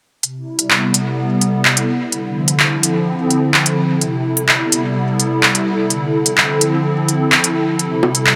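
Intricate and glitchy, this IDM fragment in A minor at 127 BPM, tuned to A4 = 438 Hz, sets a hollow, flute-like, warbling pad with ensemble chorus, sustaining soft-attack Am9 and Dm9 chords from C3 to A4, against an up-front, tape-warm electronic kit of bongos, handclaps and smooth hi-hat, both running from 0.2 to 8.4 seconds inside a huge ambient reverb.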